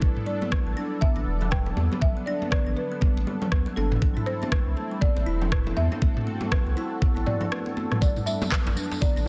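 A warm, spiritual afro house groove in 4/4 with a swung sixteenth-note feel, heard in a short section cut from a longer piece and moving between Gadd9 and Am chords. A woody, rustic folk marimba struck with medium mallets carries the melody through tape echo, while an airy, plucked kalimba plays arpeggios beneath it, also echoed and pumping with the sidechain. A smooth, detuned sawtooth pad holds sustained chords with chorus and sidechain pumping, and a round sine sub bass pumps underneath with a deep, mellow tone. An up-front, knocking electronic kick drives the track alongside ringing, high-tuned congas played with hard hands, and a produced afro-pop kit adds handclaps, rim clicks, toms and a soft-clipped snare from 0.2 to 8.6 seconds. After a brief break at 7.5 seconds, a jingly tambourine enters at 8.0 seconds and a medium-tuned djembe follows in the background, all within a dry, dense and heavily limited modern mix.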